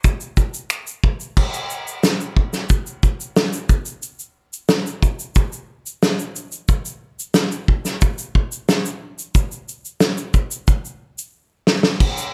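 This tender, wistful pop fragment moves at 90 BPM in a straight 4/4, carried entirely by a loose indie acoustic drum kit of kick, snare, crash cymbal, finger snaps and shaker. The kit sounds roomy and distant under a light reverb, with dark cymbals, a medium-tuned snare and a tight kick. After a brief opening, the main groove settles in at 1.4 seconds and runs until a drum fill at 11.3 seconds closes the passage.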